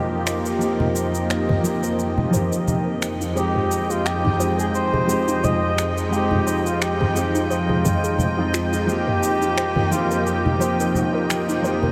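A relaxed 87 BPM groove in 4/4, swung on the 16ths, comes from a layered, tape-tinged deep house kit of cabasa, finger snaps and toms entering at 0.3 seconds, with low-tuned, thick-skinned congas played by soft hands joining in the background at 0.8 seconds. In F minor, this sunset chillout excerpt moves between Cm7/F and Fm7, carried by a lush, detuned, bright sawtooth unison pad with chorus up front, a natural-sounding baby grand with short sustain and tape echo accompanying in the background, and a very quiet, dark, round filter pluck playing arpeggios. A smooth jazz flugelhorn solo with vibrato and delay sings the melody over a calm, glassy texture of drifting overtones, all set in a dreamy mix soaked in huge ambient reverb.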